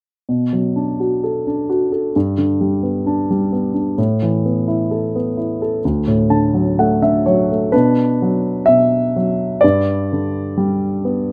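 A warm concert grand piano carries this short, lyrical classical solo, sitting up front with a deep bass and a short sustain across a range from D2 to A5. The mood is dark and reflective, moving at a rubato 64 BPM in 4/4 in B minor, with the instrument tuned to A4 = 438 Hz. The harmony passes through Bm7, G, Asus2 and D in the opening passage, and the piano adds a fill from 5.8 to 7.7 seconds before the music turns to a second section. That later passage settles onto Bm and then G, closing at 11.3 seconds, as this fragment is cut from a longer piece. A light reverb gives the room a gentle sense of space around the piano.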